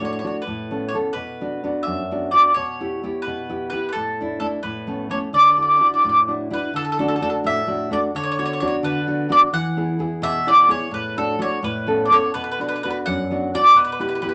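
Lively and romantic, this short Italian folk serenade cut from a longer piece moves in a rubato 6/8 at 86 BPM in D major. A woody, double-strung picked mandolin carries the melody up front over a dark, full-bodied fingerpicked nylon-string guitar with audible finger squeak, both heard throughout in a wet studio reverb as the chords drift through Bm, Em/B, Aadd9 and an E at 9.5 seconds.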